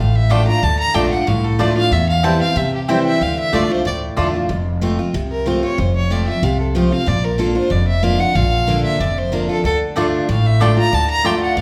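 Bathed in a wet large-studio reverb with the band playing live in one room, this rustic, haunting bluegrass excerpt in D minor at 186 BPM sets a clear, smoothly bowed fiddle melody with light vibrato up front over a bright, full-bodied picked acoustic guitar and a dark, thumpy pizzicato upright bass on gut strings, while a woody mandolin adds picked double-string stabs from 0.3 to 4.3 seconds and again from 10.0 seconds.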